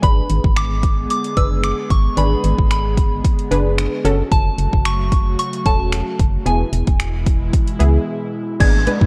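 A straight 4/4 groove at 112 BPM drives this dance-pop excerpt, built on a deep house drum kit of deep kick, metallic hi-hats, finger snaps and crash cymbal, given an overdriven edge and placed up front. Beneath it, an organ-like FM bass with a hollow, dark, percussive attack pumps against the kick, while a round, nasal analog pluck with a filter sweep carries the accompaniment, also pumping and thickened with chorus. An airy, breathy pad holds sustained chords with a slow attack and a vintage, detuned shimmer, moving from G#dim to F#m at 4.0 seconds and on to E at 6.5 seconds. On top, a soft, pure synth bell sings the melody high in its register, its full-bodied FM tone decaying gently through a chorus effect. A short break arrives at 8.1 seconds, and an electronic downlifter enters at 8.6 seconds to close the passage. The whole recording sits in light reverb with a worn, cassette-tape character and warbly pitch drift, colouring its driving, confident mood.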